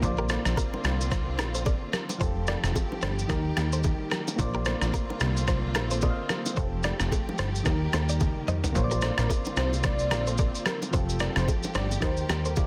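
A dense, heavily limited mix with little reverb carries this sunny, romantic afrobeats excerpt. Its swung groove rests on a muffled, thumpy lo-fi drum kit and a punchy, plucky analog bass sitting up front, with congas and bongos tucked behind. Soft, warbling electric-piano-like keys with chorus and a bright, clean direct guitar riff with digital delay ride over expressive bowed strings in the background through a Bbadd9, Fadd9 and Eb progression, and after a drum fill at 8.2 seconds a velvety, detuned synth lead with vibrato, chorus and delay enters at 9.2 seconds.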